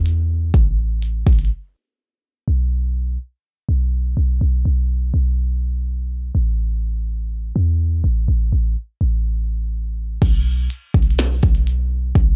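Atmospheric cloud-rap hip hop at 124 BPM in a half-time feel, this hazy, ethereal passage, cut from a longer piece, rests on a clean 808-style bass whose boomy, sine-like notes with fast attack sit up front for the whole clip. A minimal electronic drum kit, re-recorded in a small room, pairs a deep kick and tiny snare with clicky hats and a crash cymbal; it breaks off at 1.5 s, leaving the bass alone, and returns at 10.2 s. The sound is dry and gritty.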